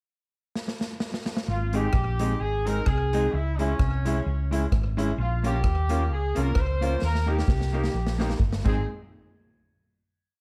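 Ska at 130 BPM in Ab major with a swung 4/4 bounce, this short, joyful piece opens with a pickup bar where the street-band drum kit plays a fill, its boomy kick, medium-tuned snare and dark cymbals sounding airy and up front with a slapback echo. At 1.5 seconds the head begins as the hollow-body bass enters with a round, punchy walking line full of slides, while the mellow horn section carries a tight, motif-based melody in song-like phrases that sits distant and roomy. The mellow electric guitar and a bright, woody upright piano join at 1.7 seconds, both playing off-beat chops, the guitar clean and echoed, the piano brilliant and present with long sustain. The drums hold a ska beat with a side-stick backbeat, and the chords move from Ab through Dbm and Bbm to Eb before a second drum fill leads back home to Ab. The piece closes on a final hit at 8.9 seconds, framed by light reverb and a dark, warm studio sound.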